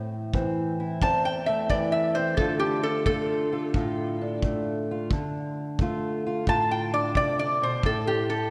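A dreamy mix soaked in lush hall reverb gives this brief cut from a longer acoustic country blues piece a brooding, mournful air. A fingerpicked old ladder-braced acoustic guitar carries the swung 4/4 accompaniment up front from the start, dark and woody with a boxy tone from its old strings and a subtle chorus. A distant, roomy kick drum played with brushes enters at 0.3 seconds, lending a punchy thump. At 1.0 seconds a metal-body resonator slide guitar takes the melody up front, metallic and nasal, played with fingerpicks and coloured by analog delay. The harmony moves from Am to Dm before the chords fall away at 7.8 seconds.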